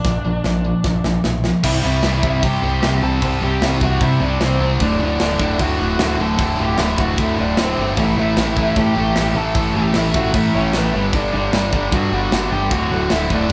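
Punk rock at 152 BPM in D mixolydian, energetic and rebellious, cut from a longer piece and played live by a band in one large studio room with a moderate reverb. A drum fill on the up-front, tight metal kit opens the track under an overdriven lead guitar from a small cranked amp carrying the melody, a bright semi-hollow guitar and a sludgy distorted guitar on riffs, and a growling, overdriven picked bass, with the drums' snare, kick and crash sounding rolled-off at the top. At 1.6 s a bright, double-tracked cranked stack guitar joins the riffing in the background as the chords move from C through D, A5 and G5 back to D.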